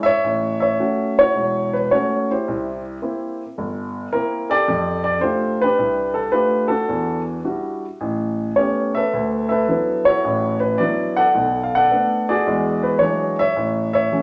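Solo jazz in A major at 108 BPM, relaxed and warm with a loose rubato swing, features an intimate, up-front concert grand piano with deep bass, long sustain and audible action noise, playing alone from 0.0 to 14.2 seconds as it moves from A6 through C7, F69 and Em9 and back to A6, all set in a large studio reverb in this short cut from a longer piece.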